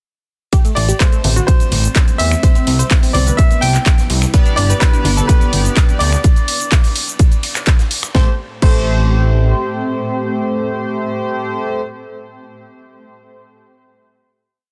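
Progressive house at 126 BPM in A minor, tuned slightly flat, with an emotional, bittersweet mood, moving from Am7 through Cmaj7 and G before a break in the harmony and a return to Am7 for a held final chord at 8.1 seconds. A punchy, up-front electronic kick drives a four-on-the-floor pulse, joined by a tape-warm house kit of cracking snare, claps, finger snaps, shaker, hi-hats and crash, while a very quiet big rock drum kit adds a looped, edited breakbeat with bright cymbals and soft-handed congas ring in the background as a tribal loop. A fat, nasal analog bass with tube saturation plays off-beat notes up front, and a lush, detuned unison pluck repeats a sixteenth-note riff over a pedal note through cassette tape and tape echo. Above them, a bright, brilliant grand piano states hook phrases through dub echo, and from 4.3 seconds a retro, glossy chorused polysynth adds open-voiced held chords with syncopated pushes. 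A shimmering, ethereal pad sustains dark chords deep in the background, while sidechain pumping breathes through the pad, pluck, piano, bass, stabs and congas in a small room and a dense, heavily limited master.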